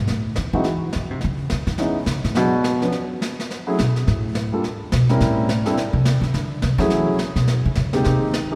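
Swinging and sophisticated, this short excerpt from a longer jazz piano trio performance moves with a lively swung feel in 4/4. The upright bass takes a solo across the whole passage, its plucked steel strings sounding woody and sitting up front. Brushes on a medium-tuned snare enter at 0.1 seconds with a dark, smooth tone and a rolled-off top. The concert grand piano joins at 0.5 seconds with a warm, deep-bass character, also placed up front as it carries the melody over harmonies that pass through altered and suspended chords before landing on Abmaj7 at 8.0 seconds. A long church reverb surrounds the trio, giving the recording the spacious air of a large hall.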